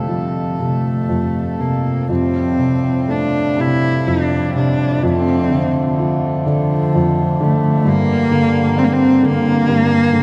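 A slow 6/8 pulse of about 40 to 44 dotted-quarter beats per minute moves in a free, rubato sway through this brief cut from a longer Celtic slow air, its mood mournful and full of longing. A single dark cello carries the melody up front, bowed sul tasto with vibrato and a close, woody tone. Beside it, a felt-muted upright piano supplies the accompaniment with a soft, intimate sound dulled by thick felt. Further back, a pedal harmonium holds sustained chords with a reedy, breathing quality. The harmony moves from F through Fadd9 and Dm/F to Gm, and the whole passage, all three parts playing throughout its 10.2 seconds, sits in a wet cathedral reverb that lingers like the air of a church or concert hall.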